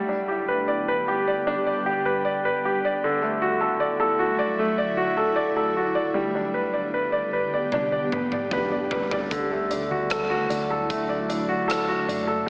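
A bright, up-front concert grand piano anchors this hopeful, heartfelt pop ballad excerpt in G major at 76 BPM, its brilliant, short-sustained chords moving between G and Dadd9 over an ethereal, airy pad thickened by chorus, phaser and its own reverb. At 7.7 seconds a huge arena drum kit with a punchy kick enters on a fill of toms, rim clicks and hi-hat, and at 9.3 seconds a round, dark hollow-body electric bass slips in quietly underneath. A lush hall reverb surrounds the ensemble, while the overall sound carries an AM-radio coloring.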